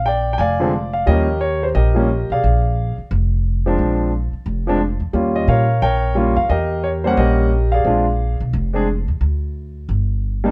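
An up-front, lightly reverberant sound frames this brisk, swinging jazz excerpt at 177 BPM in 4/4, carrying a warm, sophisticated mood in Bb mixolydian. A natural-sounding concert grand piano with a deep low end takes the melody, while a pizzicato upright bass on steel strings, woody and thumpy, holds the bass line, both playing for the full 10.5 seconds. The harmony moves through Bb7, Eb7 and Edim7, pauses at 9.2 seconds, then lands on G5.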